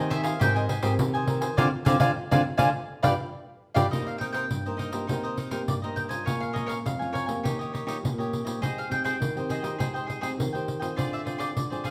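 A mellow, round mandolin carries the melody in this lively, nostalgic samba-choro fragment, taken from a longer piece, and its picked double strings are featured in a solo for the opening 3.9 seconds. A bright, crisp cavaquinho picks out accompaniment beneath it, while a fingerpicked classical nylon-string guitar fills in chords from the background with a warm tone. A second, darker nylon-string guitar holds down the bass line until 3.9 seconds, and the band hits accents together from 1.6 seconds to that point. A jingly pandeiro sits close and up front, driving a straight four-beat pulse throughout. The harmony moves through jazzy sevenths and ninths, and the group sounds like it is playing live in one room, wrapped in a generous studio reverb.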